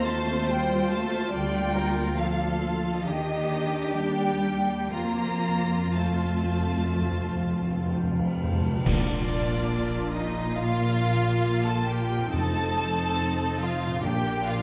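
A slow, tender romantic orchestral passage in Bb major, cut from a longer piece, opens with lush bowed violins singing the vibrato-rich melody over a second violin line, focused viola accompaniment, cello and double bass carrying the bass, and very quiet ringing harp arpeggios, all in a moderate scoring-stage reverb, before timpani enter at 5.0 seconds with a fill and bright, close cymbals and bass drum add a swell and clash that crowns the accent at 8.9 seconds.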